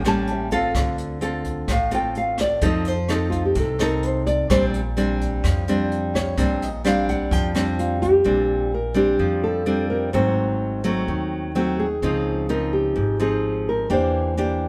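A thumb-plucked nylon-string guitar, a woody, thumpy pizzicato upright bass and a brushed drum kit with a boomy kick open this romantic, relaxed bossa nova excerpt, joined almost at once by a full-bodied, fingerpicked nylon-string guitar melody placed up front. A nylon-string guitar solo carries the first 8.2 seconds, and the drums stop at 8.1 seconds as the harmony moves from Dm7, F7 and Bb69 toward Ab7b9, Dbmaj9 and Em7b5. The band plays live together in a moderate stone room whose 1.1-second reverb surrounds the whole performance.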